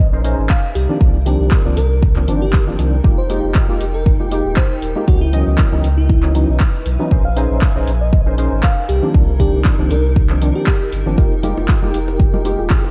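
Bathed in light reverb and a faint cassette haze, this excerpt of late-night, smooth deep house in F minor moves at 118 BPM with a gentle 16th-note swing, built on a punchy, tape-warm electronic kick sitting up front beside a deep, full sub bass with octave, while an analog drum machine supplies handclaps and hi-hat. A dark, hollow percussive organ stab with ensemble chorus and delay and a blurred, evolving granular cloud pad, both pumping with the kick, frame a sparkling, warbling bell-like FM electric piano melody over minor-eleventh chords. At 11.2 seconds the bell-like piano hands over to a mellow tine electric piano in the background, joined by a grainy tube shaker and, at 11.4 seconds, soft-handed congas and bongos ringing in a small room.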